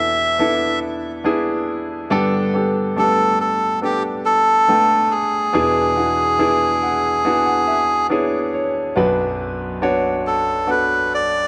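A pop ballad at a slow 70 BPM in 4/4 with a straight feel, this short cut from a longer piece carries an emotional, heartfelt mood. A reedy, breathy melodica carries the melody from 0.0 to 11.5 seconds, sitting up front between G4 and E5 with a nasal, plastic-cased character. Beneath it, a clear concert grand piano provides the accompaniment across the whole span, ranging from deep bass up to G#5 with a polished, present tone and short sustain. The harmony moves from E7sus4 through Gadd9 to E7, and the piano steps forward with a fill from 6.4 to 9.0 seconds, before the music shifts to a new section on Bm at 9.0 seconds. A moderate, lush hall reverb gives the pair a spacious room around them.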